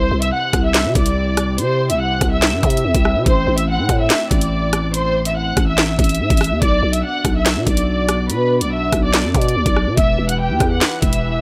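A lightly reverberant studio sound frames this cold, dark half-time drill fragment, where a smooth, vibrato-rich bowed violin section carries the melody up front over a deep, detuned analog pad with lush chorus sitting in the background, while a growling, buzzy 808-style bass and an electronic drill kit of knocking kick, sharp snare, bright hi-hats, handclaps and rim clicks, entering at 0.2 s, push forward.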